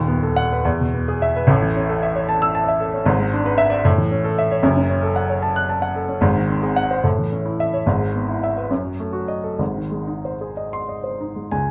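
A warm, present baby grand piano plays alone from the first moment, sounding up front with a short sustain and a light reverb, in a romantic character piece for solo piano. The mood is brooding and bittersweet, moving in 6/8 at about 61-77 BPM in dotted quarters with a rubato feel, while the harmony passes from B7/D# through E, A, F#m and G#7 before settling on G# at 9.6 seconds. Spanning a range from D#1 to F#6, the piano carries this brief fragment cut from a longer piece, which ends at 11.7 seconds.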